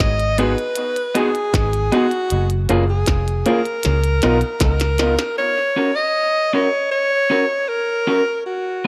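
A warm, subtoned alto saxophone leads this bittersweet, smooth lovers rock reggae fragment, its vibrato-laden jazz solo lifted by tape echo and sitting up front. Beneath it, a dark, foam-muted electric bass thumps round and punchy beside a tight, clicky electronic drum kit dressed in dub echo, while an intimate grand piano with audible action noise, also dubbed, and slightly broken-up guitar stabs fill out chords drifting from Db7sus4 through Gbmaj9 to Db13. A drum fill runs from 3.8 to 5.4 s, after which only the saxophone and the compressed guitar stabs carry on over a Gb/Db chord.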